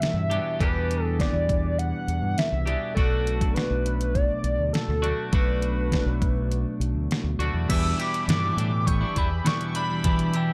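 A bittersweet, moody indie rock excerpt opens with a hollow, woody square-wave lead carrying the melody over bright twelve-string and twangy electric guitar riffs, a thumpy, overdriven 8-bit drum machine and a growling, punchy fingered bass, all in a dark production, before a sparkling brass-mallet glockenspiel line and a buzzy, very quiet combo organ join at 7.7 seconds.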